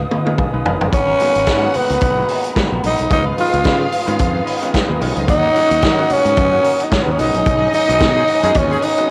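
Danceable and sultry, this disco excerpt at 110 BPM with a light sixteenth-note swing opens on a drum fill from a vintage kit with a punchy kick as a raspy, growling tenor saxophone carries the melody up front over a dark, round fretless bass, a very quiet, clean semi-hollow guitar, a brilliant yet worn grand piano, flute-like tonewheel organ chords with key click, soft-handed congas and a lush bowed violin section from 0.9 s, while a tight horn section adds stabs at 8.2 s, the band set in moderate spring reverb and small-room ambience on a home cassette recording.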